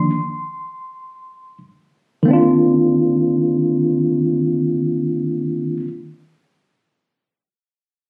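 Nocturnal and smoky, this brief hip hop fragment cut from a longer piece drifts in free time in C minor, tuned to A4 = 436 Hz, as a worn, slightly out-of-tune tine electric piano, clean yet heard through built-in speakers and placed up front, plays alone from 0.0 seconds before settling onto a Cm11 chord at 2.3 seconds, all captured on a phone in a wet room with club reverb and compression.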